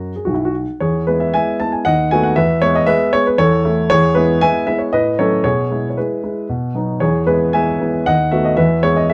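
In a straight 3/4 at 116 BPM, this cheerful, elegant classical-period piano sonatina in E major unfolds on a solo grand piano that sounds polished and present, placed up front and spanning B1 to A5 for the full 9.1 seconds. From 0.8 seconds the harmony circles around E, stepping through B7/D#, A/E, F#m/A and E/B before settling back on E. Light reverb and a dark production frame this short cut from a longer piece.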